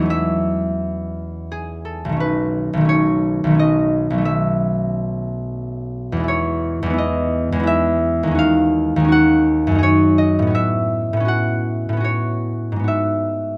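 Close, detailed microphones and light reverb frame this wistful, gentle classical passage for solo concert harp, cut from a longer piece: across 13.6 seconds the up-front harp is fingerpicked in a rubato 3/4 at roughly 68-90 BPM, its ringing, warm strings spanning B1 to F#5 through lush colours such as A69/E, Emaj7 and D#m11 before settling on G#m7.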